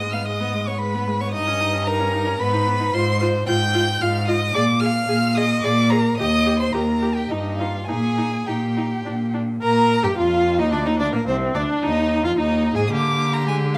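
Captured with close, detailed microphones in a recital hall with moderate reverb, this spirited, cheerful passage from a quick classical-period movement for string quartet sounds intimate yet open, its playing in triple metre shaped with a free, rubato feel. The first violin carries the melody high above the group with a rich, expressive tone, soft attacks, vibrato and touches of portamento. Beneath it, the second violin adds a clear, smooth and even second line, while the viola provides focused accompaniment that sits farther back in the hall. The cello anchors the bass with a full, resonant sound and light vibrato, standing up front as the most prominent voice. The harmony opens on shadowy A-flat minor colours before brightening onto E-flat, and at 9.6 s a new section begins that moves through A-flat and B-flat seventh chords.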